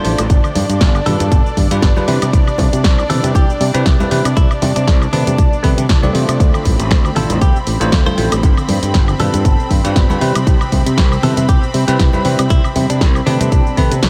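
Nu-disco excerpt with a sensual, sleek mood, where a punchy, up-front electronic kick and a growly fingered electric bass drive a house kit of punchy snare, bright hats, shaker and woodblock, while very quiet ringing congas, a bell-like tine electric piano with phaser and tape echo, a thick detuned unison pad pumping under the kick, a mellow, soft round pluck playing arpeggios, and a clean, compressed electric guitar melody with phaser and analog delay sitting in the background all move through G7, Cmaj7, Am9/C and Dm7 in light reverb.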